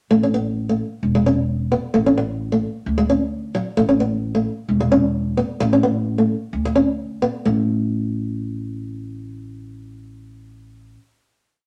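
A nylon-string guitar and upright bass open together in this short, sunny highlife piece at 130 BPM, the fingerpicked guitar repeating a small, up-front ostinato over a woody, thumpy pizzicato bass that plays a dotted figure on gut strings. The groove moves through E5, D and Bmadd9/D chords until the guitar stops at 7.6 seconds, leaving the bass to ring out a final note until 10.9 seconds. A wet studio reverb surrounds the up-front pair.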